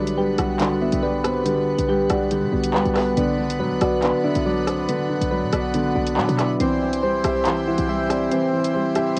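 A half-time drill groove at 140 BPM in 4/4 drives this tense, cold hip hop excerpt, its electronic kit marked by bright hats, handclaps and rim clicks, all given a cassette-tape tint. Underneath, a short, punchy 808-style bass with a fast attack and a noise layer hits in the low register until 8.3 s, when it stops and the kick drops out for the final stretch. The harmony sits in B phrygian, moving from Gmaj7/B to Bm at 3.2 s and then to C/B. A dark, worn baby grand piano carries the accompaniment with audible action noise and a boxy, intimate tone, while a reedy, rich accordion holds sustained chords. Soft, round electric-piano-like synth keys, the most prominent melodic part, spin detuned arpeggios through chorus and tape echo. In the background, a full-bodied octave-layered synth lead with vibrato traces a second line between B4 and F#5, colored by chorus, phaser and tape echo, and the whole piece has the light reverb of a home cassette recording.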